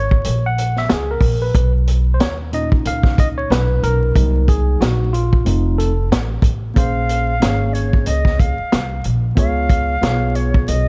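A swung 92 BPM hip hop groove in 4/4 drives this nocturnal, cool jazz-hop excerpt in Bb minor, built on an up-front vintage drum kit with a punchy kick, high-tuned snare and hi-hat, and a woody, thumpy pizzicato upright bass on gut strings. A worn, slightly out-of-tune tine electric piano takes a solo through the first 6.8 seconds over chords moving from Gb through Bmaj7, Cm7b5 and F7. At 6.8 seconds a distant, airy silver concert flute enters with a tongued, vibrato melody over Bbm9 and Db7, all set in a dark, warm small-room production with vinyl crackle.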